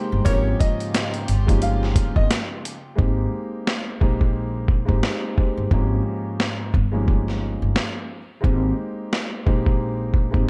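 Steeped in a dark, reverb-soaked production, this nostalgic, soulful boom-bap hip-hop fragment in Ab major at 88 BPM rides a gritty, pitched-down sampler kit with a thumpy kick and high-tuned snare sitting up front, whose hi-hats fall away at 3.0 s, over woody pizzicato upright bass and a mellow, vintage grand piano with audible action noise and a cassette-tape tint, while a worn, slightly detuned upright piano carries a short slapback-echoed melody until 2.3 s, a brief jazz-style saxophone stab with vibrato flickers in the background, and soft, floating bowed strings hover distantly through the opening.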